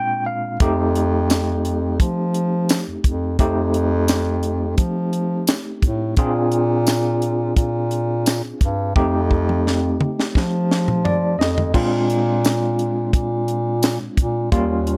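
A barky, overdriven tine electric piano opens this laid-back, swaggering soul blues with a short fill, its gritty tone pushed through a combo amp and shimmering with fast tremolo. At 0.6 seconds a tight funk drum kit and a mellow bass clarinet join. The drums sit up front with a dry, acoustic sound: bright cymbals, a high-tuned snare, a tight kick, hi-hat, toms, crash and tambourine. The bass clarinet carries the low end in a jazz style, also up front, with vibrato, a subtone and a smooth top. At a relaxed 86 BPM in a straight 4/4, the harmony moves between Bb9 and F9. A drum fill starting at 9.0 seconds and a piano fill lead into a new section at 11.7 seconds, all set in a small, close room that recalls a 1970s studio, in this excerpt cut from a longer piece.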